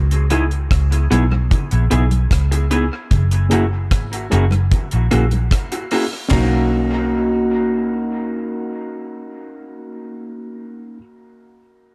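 Smooth and tender, this lovers rock reggae excerpt rides a straight 4/4 groove built on a dark, round, foam-muted fingered electric bass and a dry, deep reggae drum kit with a high-tuned snare, tight kick, rim clicks, hi-hat and splash cymbal touched by dub echo. An up-front electric guitar through a small old amp adds slightly broken-up, lo-fi stabs with subtle chorus and dub echo, while a mellow tine electric piano sits clean in the background and very quiet, damped congas with a thin, bright skin add soft-handed colour. The C#m7 and F#7 changes resolve to Bmaj7 at 6.3 seconds. The drums drop out shortly after at 6.5 seconds and the congas at 6.7 seconds, leaving bass, guitar and piano in a small room ambience.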